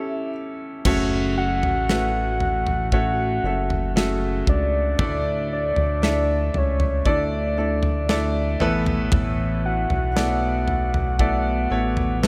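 A slow, straight 4/4 pulse at 58 BPM carries this hopeful, heartfelt pop ballad, cut from a longer piece and tuned to A4 = 439 Hz. A clear concert grand piano and a soft octave-layered synth lead open together at 0.0 seconds, the piano intimate and up front with audible action noise and deep bass, the lead round and mellow with a triangle and sine tone, a sub octave, chorus and vibrato. At 0.9 seconds a chorused synth bass and a modern studio drum kit enter, the bass glossy and nasal with a retro pulse-wave and sawtooth character, a filter pluck and pulse-width modulation, sitting prominently beneath the harmony. The acoustic kit sounds airy and polished in a small room, with a tight kick, a medium-tuned snare, toms and crash cymbal. The chords move from A7 to F#m, then Dsus2 and Asus2, all under a light reverb.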